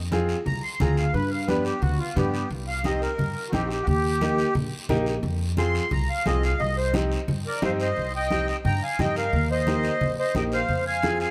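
Light reverb lends this fiery, passionate cumbia a touch of space, with a reedy accordion set up front and the congas sitting in the background. Moving at a straight 176 BPM in 4/4 and in C minor, it is a short cut from a longer piece. The accordion carries the melody from 0.5 seconds, its light tremolo tuning giving a sweet yet dark, smooth voice, and it takes a solo through the first section until 8.0 seconds. Beneath it, a pizzicato upright bass with gut strings sounds woody and thumpy. A clear, polished upright piano supplies present accompaniment. The low-tuned, thick-skinned congas carry a small-room character, and a raspy, saturated guiro adds compressed scrape at a low level, while the harmony cycles through Fm, G, Cm and Eb before a second section begins at 8.0 seconds.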